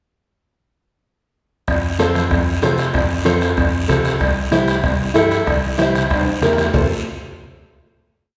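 Festive and danceable, this short cumbia moves at 190 BPM in a straight 4/4 feel in F major. From 1.7 seconds a clean tine electric piano, heard through its built-in speakers, carries the low cumbia bass figure, while the bombo sits up front with a soft-beater kick and rim, distant in a large room. Further back, damped, thick-skinned congas played with soft hands and a ringing metal cowbell with high and low timbales fill out the percussion, joined by a raspy, saturated guiro. A boxy, small-sounding nylon-string guitar joins at 2.0 seconds, fingerpicking rhythmic triad chords. The harmony moves from F to C and home again, a drum fill arrives at 6.1 seconds, and the piece settles on a final F chord inside a wet recital-hall reverb.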